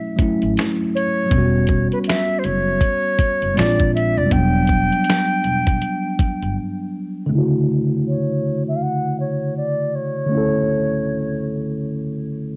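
Lightly reverberant and hazy, this home cassette recording is a reflective lo-fi hip hop passage cut from a longer piece, led by an airy, reedy concert flute with a straight, tongued tone, muffled by a low-pass filter, over a worn, slightly out-of-tune tine electric piano that carries its own cassette grit and jazz chords opening on a rootless Dmaj9. A gritty, compressed sampler-style kit of finger snaps, hi-hat, thumpy kick and medium-tuned snare swings alongside a woody pizzicato upright bass until both drop out at 6.6 seconds for a short break. From 7.3 seconds a filter sweep colours the closing section as the flute and piano carry on alone.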